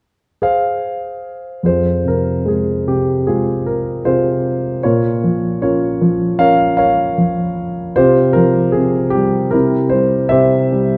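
A dark, mellow concert grand sits up front in a moderate concert hall, its deep bass and short sustain giving this wistful F minor excerpt from a longer piece a smooth, vintage cast. Played alone in lyrical classical style at 76 BPM in 4/4 with rubato, the piano enters at 0.4 s and ranges from F2 to F5. The harmony moves from F minor to B-flat minor before settling on a suspended C at 8.0 s and then C major, leaving the phrase hanging as it is cut off at 11.0 s.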